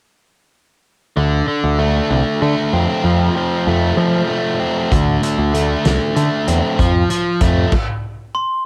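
Indie rock with a restless, cool mood in a straight 6/8, where a biting overdriven guitar riff and a growling, overdriven picked bass carry the line from 1.2 s, a loose drum kit with a fat snare, punchy kick and dark cymbals joins at 4.9 s with a pumping cassette-tape character, and after everything stops at 7.7 s a bell-like glockenspiel struck with soft plastic mallets rings a single high note, all in a dry, up-front home cassette recording cut from a longer piece.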